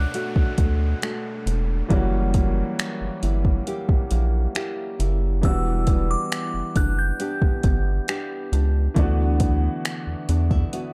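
Contemporary R&B at a slow 68 BPM with a longing, sensual mood, this short excerpt sets a glassy, crystalline FM synth bell melody with chorus and delay (ending at 8.3 s) over warm, long-sustaining baby grand piano accompaniment, a dark, fingerpicked nylon-string guitar playing delayed arpeggios with audible finger squeak, a rubbery, bouncy square bass up front, a faint electronic downlifter that stops at 5.4 s, and a smooth electronic drum kit of soft kick, metallic hi-hat and finger snaps, while the harmony moves through Bm7, F#7b9, Em7 and D69 in a dry, dark, warm production.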